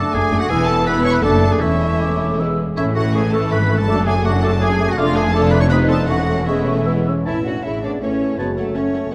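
A quick, graceful classical-period movement for symphony orchestra in A major and 3/4, moving at 151-170 BPM with a rubato feel and a cheerful mood, cut from a longer piece. A close violin section carries the melody with vibrato and expressive portamento, while a baroque flute with an airy, wooden tone, a clear clarinet, a second violin section and an oboe weave second lines in the background. The clarinet and oboe stop at 8.5 seconds, and the other parts play on to the end. Beneath them, a dark bassoon and a lush, soft-attacked viola section supply accompaniment, and a tight French horn section holds sustained chords. A focused cello section and a distant double bass section anchor the bass. The harmony passes through D/F#, Dm/F and F7 before settling on A at 7.3 seconds, all heard in a dark production with wet concert hall reverb.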